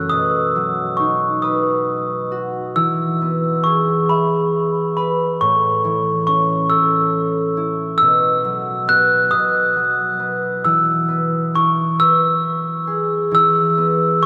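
A soft glockenspiel played with rubber mallets and a fingerpicked concert harp begin together at 0.0 seconds, opening this gentle, tender children's lullaby in a lilting 6/8 with an unhurried, rubato feel. The glockenspiel carries the melody high in its register, its metallic, bell-like tone kept mellow by the rubber mallets and placed up front. Beneath it, the acoustic harp spreads a ringing accompaniment across a broad range, also sitting close. The harmony moves from B to E, then A, then Bsus4, and settles back on E at 10.6 seconds. A lush cathedral reverb places both instruments in a vast, echoing space, and the passage, cut from a longer piece, ends at 14.3 seconds.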